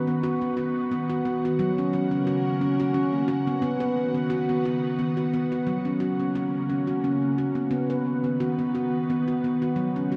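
Gentle and calm, this short meditative world excerpt sets ringing, stainless-steel handpan arpeggios, played with the fingertips and trailed by a diffuse ambient delay, over an ethereal, warbling pad of sustained chords with ensemble chorus, moving between B and F# in a lilting 3/4 swing within a dark production bathed in a long church reverb.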